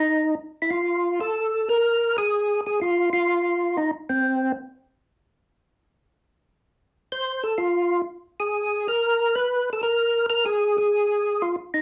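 Jazz with a swinging, greasy mood at 125 BPM in 4/4, cut from a longer piece: a lone percussive tonewheel organ plays from 0.0 to 11.8 seconds in the range C4 to C5, its fat, clean tone marked by third-harmonic percussion and audible key click. The organ sits up front, colored by a slow rotary speaker, chorus vibrato and cassette tape. A wet small-room reverb and a home cassette recording give the sound an intimate, lo-fi character.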